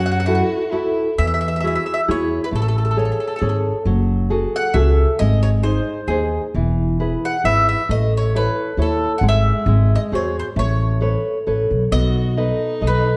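Opening together, a round, mellow picked mandolin carries the melody over full-bodied fingerpicked nylon-string guitar and growly, woody pizzicato upright bass in this passionate, wistful Italian folk serenade at 134 BPM in 3/4, while a rich, focused bowed violin with vibrato adds a second line for the first 1.2 seconds and returns at 11.9 seconds, in a dark production with moderate recital hall reverb as the chords move from F#m7 through Amaj7 to a closing B7.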